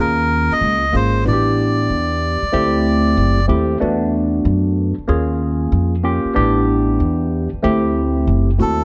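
A reedy, nasal melodica carries the melody of this smoky, mellow hip hop excerpt at 94 BPM with a swung 16th-note feel, playing until 3.5 seconds and returning briefly at 8.6 seconds. Beneath it, a worn, slightly out-of-tune tine electric piano runs through a combo amp and a phaser, voicing suspended ninth chords such as D#9sus4 and A9sus4. A woody, dark pizzicato upright bass anchors the low end, and all three parts sit up front in a small room.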